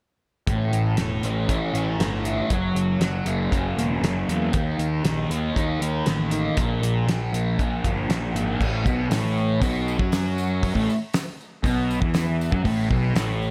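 A small room ambience and an echo-heavy mix give this hypnotic, kaleidoscopic psychedelic rock excerpt its echoing character, moving at 118 BPM in a straight 4/4. Up front, a thick, double-tracked fuzz guitar plays a dark, picked riff through distortion and phaser, shifting from A to F#, D#5 and Bb before landing on A5. Beneath it, a fuzz picked electric bass, punchy and overdriven, holds down the low end. A cloth-damped, thuddy acoustic drum kit with dark cymbals, a fat snare and a tight kick sits close in the mix, its warm, rolled-off top treated with analog delay. At 8.6 seconds a jingly, compressed and saturated tambourine joins in the background, also fed through analog delay, as the piece moves into its second section. The guitar and bass carry on together until 13.5 seconds.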